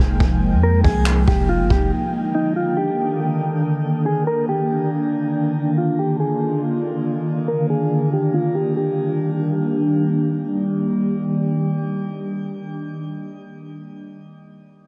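Dreamy and floating, this atmospheric cloud-rap piece in Eb major moves at 140 BPM in a half-time 4/4 feel, and it is cut from a longer piece. A glassy, ethereal FM pad carries sustained chords up front from the start to 13.0 seconds, its slow attack and long release colored by ensemble chorus, built-in reverb, phaser, sidechain pumping and a low-pass filter, while a filter sweep runs until 8.8 seconds. A clean, sine-like 808-style bass with a deep, boomy low end, fast attack and decaying tail sounds only briefly at the opening, under an Fm11 chord that gives way to Ebmaj7 at 1.9 seconds. Alongside it, a jazz brush drum kit plays handclaps, hi-hat and a roomy kick with a rolled-off top, sounding acoustic yet set in a small, distant space. A mellow, fingered electric guitar traces a soft melody in a narrow upper-middle range until 10.0 seconds, darkened by a low-pass filter and trailed by digital delay. 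The whole mix sits in light small-room ambience with a heavily compressed, radio-like sound, and the music shifts into a new section at 8.8 seconds.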